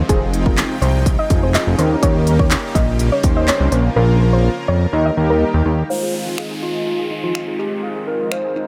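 A punchy house drum kit with cracking snare, crisp hats, finger snaps and handclaps drives this confident dance-pop excerpt in F minor at 124 BPM, over a fat, detuned analog bass that pumps until 5.8 s, a lush sidechain-pumping supersaw pad, dark chorused synth brass and a soft round pluck melody steeped in dub echo, before a gentle, warbling FM-style struck lead, a bright background unison pluck playing arpeggios and an electronic downlifter arrive at 5.9 s in a lightly reverberant, echo-heavy mix.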